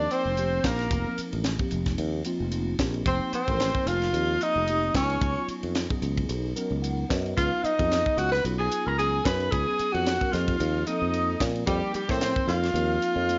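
A 112 BPM groove in 4/4 with a light 16th-note swing drives this funky, soaring electric jazz fusion excerpt, built on a tight funk kit of hi-hat, high-tuned snare, tight kick and ride, under a growly, up-front fretless bass sustaining beneath chords that move from F9sus4 to Db9sus4 and back. A breathy tenor saxophone carries the melody with vibrato, scooped notes and a slapback echo, while a bright, overdriven, double-tracked garage guitar plays a picked second line above it. In the background a mellow tine electric piano with ensemble chorus fills in the harmony and adds a short fill at 6.6 seconds, all set in a moderate large studio reverb with a dark, rounded top end.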